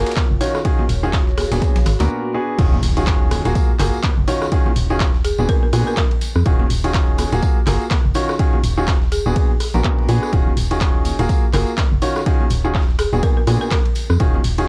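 Opening on a clear baby grand piano riff with audible action noise, a hollow organ-like FM bass and a woody folk marimba melody carried on cassette tape echo, this energetic, soulful piano house excerpt at 124 BPM in Eb minor adds a warbling, nostalgic pad that stops by 2.1 s, an up-front punchy electronic kick, an analog drum machine with handclaps and rim clicks, a gritty breakbeat kit in the background, distant ringing tambourine and congas, and a very quiet impact as the drop lands at 2.6 s, with piano, bass and pad pumping against the sidechain over a dry home-cassette sound.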